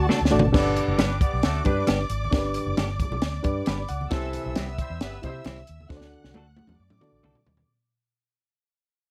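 A lightly reverberant sound carries this danceable, uplifting excerpt of uptempo 1960s-style soul at 134 BPM in G major, where a dry compact cocktail drum kit with a high-tuned snare and a round, foam-muted vintage electric bass drive clean, compressed electric guitar stabs and a reedy electric piano up front, while lush bowed violins, a loose vibrato horn section and very quiet, saturated congas fill the background, with a drum fill opening the piece, an electric piano fill at 3.4 seconds and a fade-out running to the end over chords moving from D to G, C and back to D.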